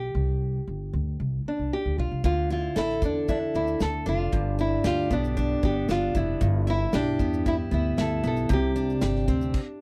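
This carefree acoustic pop piece opens with a small, dark-toned nylon-string guitar, fingerpicked and carrying the melody with a slapback echo, over a woody pizzicato upright bass set up front. At 2.2 seconds a full-bodied, picked steel-string dreadnought guitar joins with accompaniment, alongside a natural country drum kit in a small room, whose punchy kick, medium-tuned snare, shaker and crash cymbal give the groove an easy-going, straight feel in four. The harmony drifts through Csus2, Dmadd9, G and Em/G before returning to Csus2. The sound is dry and close, in the manner of a 1970s studio, with the guitars and bass sitting near the listener. The bass stops at 9.5 seconds, and the other parts end just after in this short passage cut from a longer piece.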